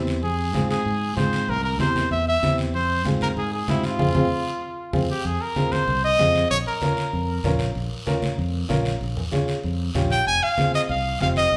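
A clear trumpet with light vibrato leads this fiery, driving cumbia excerpt at 191 BPM in F minor, resting from 7.6 s until it returns at 10.1 s, over a worn, slightly detuned upright piano, a punchy fingered electric bass, raspy guiro and bright, saturated low-tuned congas, with a band accent from 4.0 s and the live group sharing a large, reverberant room.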